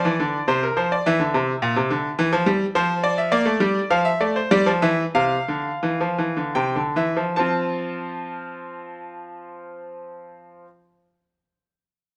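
Close, detailed microphones and a light reverb place a bright concert grand piano up front and present in the room. This is a joyful, elegant classical piece in the manner of a baroque two-part invention, moving in a straight three-beat metre and cut from a longer work. The solo piano has a brilliant, slightly worn tone, with a deep bass at the bottom of its span from Bb2 up to A5. The opening section broadens as the playing slows from 2.5 to 7.4 seconds, arriving on an F chord where a second section begins. The piano falls silent at 10.7 seconds, shortly before the close.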